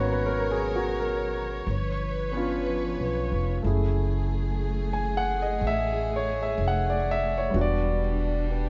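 Swung eighths in four carry this tender, intimate jazz ballad fragment, where a woody, thumpy pizzicato upright bass on gut strings sits up front in a dark low register, a grand piano with audible action noise and long sustain accompanies through rich chords such as G#m11 and G7#11, and a close chamber string section holds bowed, sul tasto chords with vibrato, all softened by light reverb and a mellow top end.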